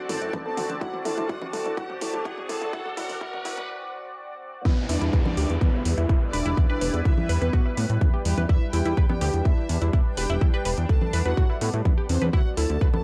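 A punchy, up-front electronic kick drives this dark, driving melodic techno excerpt in E minor at 125 BPM, where a deep house kit of congas, metallic hats and toms plays a fill over a riser and downlifter while filter sweeps move across the octave-layered synth lead, tight sequenced sawtooth arpeggios and bowed violin section through the build-up, before a short break gives way to the drop at 4.7 s; throughout, a fat, saturated analog bass and a bright, resonant, sweeping pad pump under the sidechain with tape echo on the lead, arpeggios and strings, all captured in a dry, gritty cassette-tape sound.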